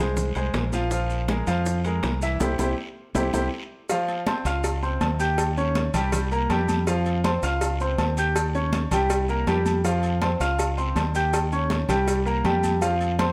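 A straight 4/4 salsa groove at 161 BPM drives this passionate, fiery cut from a longer piece in F minor, with most of the percussion entering at 0.2 seconds and the timbales and agogo bells following at 0.4 seconds. The upright piano sits up front with a brilliant, woody, open tone over a broad range, while the fingered electric bass sounds direct and bright, anchoring the low end alongside it. Behind them sit thick-skinned, damped, high-tuned congas, round, low-tuned bongos and cowbell, ringing metal-shelled timbales and agogo bells with a vintage, band-limited color, and a raspy guiro. Grainy, mellow maracas add a compressed, saturated edge. After an opening on Fm, Bb5 and C, the full band hits accents from 2.4 seconds, with a drum fill leading into a new section at 3.9 seconds. From there the harmony cycles through F5, Dbmaj7, Eb7 and C5, and a moderate large-studio reverb gives the ensemble a sense of space.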